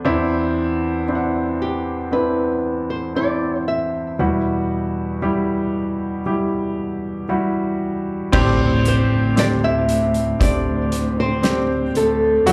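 A polished grand piano opens this heartbroken, longing pop ballad, sitting up front with a present, warm tone and a plate reverb as it moves through chords such as Cadd9/E and Emadd9. At 1.6 seconds a small, fingerpicked nylon-string guitar takes the melody, its dusky voice sharing the same plate reverb. At 8.3 seconds, as the music moves to a D7sus4, a bowed studio cello section enters on the bass line with a dark, woody sound, smooth top and vibrato. A loose indie drum kit joins at the same moment with a punchy kick, a medium-tuned snare, a hi-hat and a crash, set in a small, pumping room with shadowy cymbals, while an electronic impact sits in the background. The whole thing sounds like a live gig heard through a club's PA, with a moderate room ambience, and it is cut from a longer piece.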